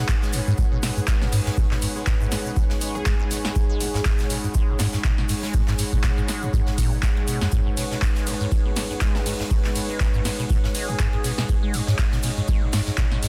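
A dark analog pad, a granular cloud pad and a squelchy, resonant acid bass open this raw, gritty acid house excerpt, joined almost at once by a deep, tape-warm electronic kick sitting up front and an analog drum machine with a punchy snare, handclaps and metallic hats. The dark pad holds sustained, moody chords with detuned, wave-folded tones, chorus, vintage 12-bit sampler grit and sidechain pumping, while the granular cloud pad drifts above it as a blurred, evolving texture bathed in its own reverb and also pumping. The bass riff has a liquid, sawtooth character with a filter sweep, phaser, subtle chorus and tape echo, driving the groove with a swung 16th-note feel. Tucked beneath, a very quiet, polished acoustic kit adds hi-hat, shaker and snare, and a grainy tube shaker sits close and dry. A plucky, detuned unison lead appears only briefly in the background, around 3.0 and again near 10.9 seconds, its mellow sawtooth tone carrying vibrato, a moving notch, subtle chorus and tape echo, all within a dense, heavily limited modern mix with light studio ambience.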